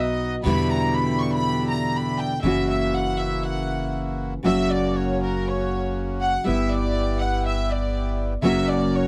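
Rubato in 4/4, this dramatic, tense tango fragment from a longer piece features a bowed violin section up front with light vibrato and a period gut-string tone, over a fingerpicked, full-bodied nylon-string guitar, short reedy stabs from a close-miked bandoneon, and a woody pizzicato upright bass, all captured in a dry, close 1970s-style studio sound as the harmony moves from Em7 through F#7 to G6 and back to F#.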